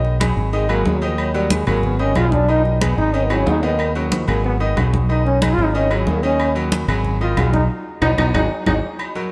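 A mellow trombone opens this driving, danceable salsa fragment at 184 BPM, playing a solo melody with light vibrato and a punchy attack over a bright grand piano, a fingered electric bass and congas, all starting together. The trombone sits distant and roomy, while the piano feels intimate and brilliant, its action noise audible beneath the accompaniment. Up front, the dark, round electric bass anchors a minor-leaning progression that circles through Abm7, Ab5 and Ebm before turning to B near the end. The thick-skinned congas, played with hard hands, sound close and dry, and just after the start ringing agogo bells and timbales join from a large room alongside woody claves in the background. Drum fills land around 3.3 seconds and again at 8.2 seconds, inside a band accent that begins at 7.7 seconds and drives the cut toward its close, all set in a moderate plate reverb heard from further back in the room.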